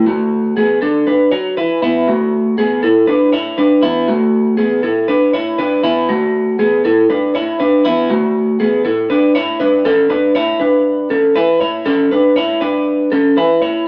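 An electric guitar played through a small old amp opens this short indie pop piece, cut from a longer work, starting on an A chord and carrying the whole 13.9 seconds by itself. Its picked tone is bright and twangy, slightly broken-up, with a subtle chorus and a place up front in the mix. The steady, straight 4/4 feel and the guitar's middle register give the music a youthful, nostalgic mood. A new section arrives at 9.9 seconds and runs to the cut. A wet club reverb and a dark, warm production surround the guitar's edge.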